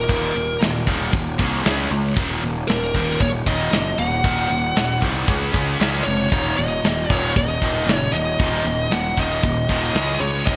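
A straight 4/4 pulse drives this aggressive, heavy hard rock excerpt, with a big acoustic rock kit entering at 0.1 s, its tight kick, medium-tuned snare and hi-hat sitting up front in a mid-forward, rolled-off sound with a roomy feel. Up front with it, a dark, high-gain lead guitar plays the melody with distortion and delay. Two picked rhythm guitars carry the riff further back: a biting overdriven one with a warm edge and a bright, heavy high-gain one with distortion. Underneath, a growly picked electric bass adds fuzz and overdrive to a direct-and-amped tone. The harmony moves between Eb5, Db5 and Eb minor chords, all wrapped in moderate plate reverb and a small room, with a bright 1980s-style digital production.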